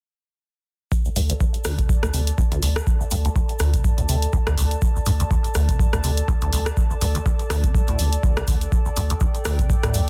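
An up-front, overdriven analog kick opens this trippy, hypnotic acid house cut at 0.9 s alongside a grainy shaker in the background, joined shortly by a squelchy, resonant sawtooth acid bass riff with filter sweeps, phaser and digital delay, while a thick saturated sub bass, a punchy overdriven drum machine's hi-hat and rim click, and a warbling, nostalgic lo-fi pad with chorus and reverb all settle in by 1.3 s, the pad and both basses pumping against the kick in a dense, heavily limited mix.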